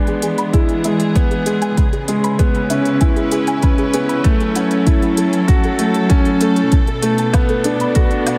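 A cut from a longer piece of cinematic, hypnotic piano-and-strings electronica opens on a close, intimate string section holding bowed chords with vibrato and a soft attack, beside an up-front concert grand piano riff with a natural, deep low end, over a barely audible sub bass. At 97 BPM in 4/4 with a straight feel in B dorian, the whole passage works as a build-up, moving through E7, C#m7, F#m7 and Bm7. From 0.1 s a dark, gentle pluck traces arpeggios high in the background, its round, chorused tone carrying delay, shimmer reverb and sidechain pumping, while smooth electronic hi-hats and woodblock add a light layer of produced percussion. A deep electronic kick arrives at 0.5 s and sits prominently at the front. The strings also pump with the sidechain and share the shimmer reverb with the piano, whose echoes of delay trail its riff, all within a moderate scoring-stage space.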